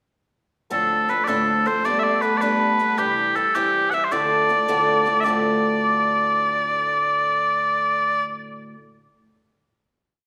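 Bathed in the wet reverb of a church or concert hall, this brief, spirited and driving Celtic jig in 6/8 at 106 BPM in D dorian puts sweet, mellow small bagpipes up front with a motif-based, vibrato-laden melody over a picked, woody, boxy old ladder-braced acoustic guitar whose old strings drive open chord shapes through Dm7, Gadd9 and C before a final chord rings from 5.2 seconds.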